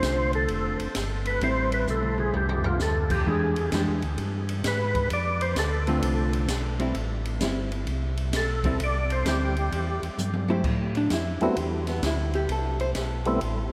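Soul jazz organ trio at 130 BPM in 4/4 with a swung eighth-note feel, in A minor, carrying a late-night, smoky mood in this short cut from a longer piece. A percussive tonewheel organ takes the melody as a solo through the first 10.6 seconds, its full, lightly overdriven tone colored by second harmonic percussion, chorus vibrato and a slow rotary speaker. Beneath it, a second tonewheel organ supplies the bass line with a mellow, round, dark voice, clean with audible key click and its own slow rotary speaker, sitting up front in the mix. A vintage hollow-body jazz guitar accompanies with a dark, clean, picked and compressed electric sound, then steps forward for a solo from 10.6 seconds. An open jazz drum kit with dark cymbals, a high-tuned snare and a boomy kick plays throughout, adding fills at 1.9 and 10.2 seconds. The harmony moves through Dm7, Am7 and E7#9, then Dm7, Am7 and Em before arriving back on Am7, and the whole trio is bathed in a wet cathedral reverb that places it in a vast, echoing space.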